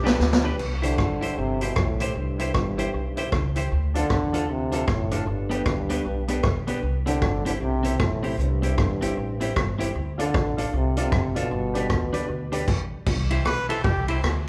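Bouncy and joyful, this swung ska piece in C major moves at 154 BPM, opening with a drum fill and a brief, distant clarinet phrase before a close-miked trombone takes the lead from 0.8 s with vibrato and scooped notes. Underneath, a bright, twangy clean electric guitar, a woody pizzicato upright bass, a street-band drum kit with a boomy kick, and a polished upright piano stabbing in the background play together live in one room, bathed in large studio reverb. At 13.5 s a clear trumpet steps up front for a short solo over a C chord.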